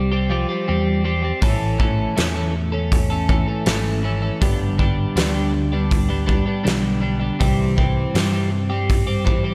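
Restless yet anthemic, this short excerpt of quiet-loud alternative rock moves at a steady, straight pulse in 4/4. A bright, twangy twelve-string electric guitar plays clean, picked arpeggios up front from the first moment, its compressed tone colored by a subtle chorus and a slapback echo. Beneath it, a mellow fretless electric bass supplies a dark, round, amped low end with its own light chorus shimmer. At 1.4 seconds a loose indie drum kit joins with hi-hat, a punchy kick and a fat snare, set forward in a pumping studio room. The harmony moves from Fsus2 to A, then G and C, and a concert hall reverb gives the whole arrangement a big arena sound.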